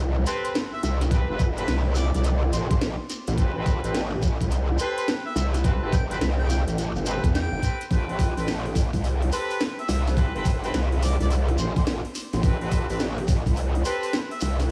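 A light small-room sheen surrounds this swaggering, playful glitch hop fragment in A minor, which moves at 106 BPM in 4/4 with a 16th-note swing and opens on an Am9 chord. A very quiet electronic impact marks the first 1.1 seconds before the knocking, tape-warm electronic kick arrives up front and runs until 13.5 seconds. Beside it sits a layered electronic drum-and-bass kit with a cracking snare and metallic hats, joined by a grainy, mellow shekere that sits close and dry in the background. Dominating the low end, a growling, detuned growl bass wobbles through a formant filter, saturated, compressed and bright with chorus, spanning G1 to E2. A clear, tight horn section plays jazz-style stabs from a distant, roomy position, roughened by vintage 12-bit sampler grit, pumping with sidechain and trailed by tape echo. High above, a warm harmonica with light vibrato carries a classical-style solo melody between C5 and G5, lying far back in the mix with its own tape echo.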